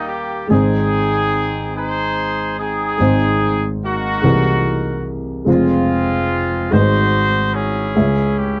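Close, dry and intimate, this short gospel passage sounds like a 1970s studio session, with only a light reverb around the players. A dark upright piano carries the accompaniment from the first moment to the last, its woody, mellow tone sitting up front with the soft clatter of its action audible and its notes decaying quickly. Alongside it, a tight pop-style horn section plays the melody, clear and vintage in character, and also placed close to the listener. Moving in a steady, straight 6/8, the music feels uplifting and soulful, and a repeated phrase restarts at 3.0 seconds. The harmony travels from Eb7 to Ab, then through C7alt, Fm and Ab7 before landing on Dbm at 8.0 seconds, just before the cut at 8.6 seconds.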